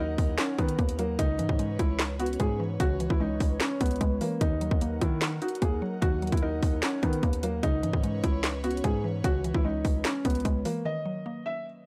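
Brooding and dark, this trap hip hop fragment moves at 149 BPM with a half-time feel in Eb phrygian, cycling between Ebm and Dbm7 before a brief closing section at 10.9 s. A felt-muted upright piano carries the melody up front, soft and boxy with audible action noise and tape echo, over a woody, round FM synth pluck with chorus and a breathy, detuned pad sitting in the background. A saturated, punchy 808-style bass rumbles low beneath a trap kit that enters at 0.2 s with a hard-clipped kick, sharp snare, handclaps and tape-warm hats, all captured in a dry, gritty hardware sound.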